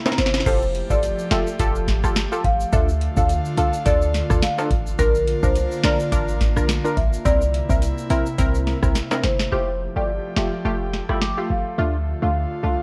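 Dancehall at 106 BPM in 4/4 with a lightly swung sixteenth-note feel, hypnotic and sultry, cut from a longer piece. A booming analog drum machine sits up front with a deep kick, crisp snare, metallic hats, rim clicks and crashes, opening with a drum fill and adding another at 9.0 seconds. Alongside it run bright timbales and tube shaker from a small room until 9.5 seconds, while a clean, sine-like 808-style bass supplies deep, boomy low notes. An airy, breathy pad holds sustained chords and punchy, detuned sawtooth stabs fill in the harmony, both treated with chorus and sidechain pumping over a progression moving from Fadd9 through Dm, Bb and C7. A woody, dark marimba carries the melody with delay, and at 11.1 seconds a twangy electric guitar with an envelope filter and spring reverb adds a brief arpeggio. The mix is dry and has the worn, warbling pitch drift of old cassette tape.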